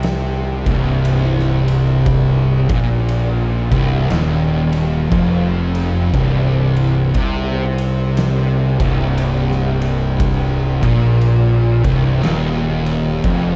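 Stoner and doom metal in C minor, this hypnotic, brooding excerpt crawls at 59 BPM in 4/4 with a swung eighth-note feel, resting on a single C minor chord throughout its 13.6 seconds. Three thick fuzz guitars play the riff together from the start: one distorted part sits in the background, while two more, one of them double-tracked, sit very quiet beneath it. A fuzz fingered electric bass plays low under them, its tone growly and punchy, direct and amped with overdrive. The oversized low-tuned drum kit, heard in a bright stone room, pairs a boomy kick and fat snare with dark cymbals on the ride, and its sound carries a saturated, gritty edge from vintage 12-bit sampler processing. A moderate studio reverb and a dark production give the piece a heavy, murky weight.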